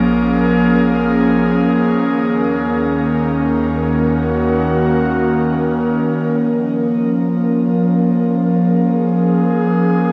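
This ambient piece in free time feels reflective and melancholic, a short fragment cut from a longer work in B-flat minor, tuned to A4 = 444 Hz. An airy, breathy pad sits up front throughout, holding soft, detuned sustained chords with a slow attack, a long release, a noise layer, chorus and a shimmer reverb. Beneath it, a round, deep analog bass stays in the background with a mellow, evolving tone, fading out gradually from the start until it stops at 6.4 seconds. The harmony moves from Bbm7 to Ebm7 and returns to Bbm7 at 6.4 seconds, where a filter sweep begins on the pad and runs to the close at 10.1 seconds. The sound is wrapped in a lush hall reverb with a 2.5-second decay, a trace of small-room ambience and the worn, warbling pitch drift of old cassette tape.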